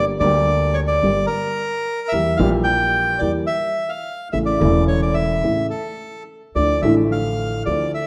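A reedy bandoneon carries the melody up front from the opening moment, joined at once by a dark, mellow upright piano and a woody, pizzicato upright bass. This tense, passionate tango fragment moves with a rubato feel through Gm, Edim and A before settling on Dmadd9. A recital hall's reverb surrounds the trio, and the bandoneon sounds alone for a moment after the others stop at 7.9 seconds.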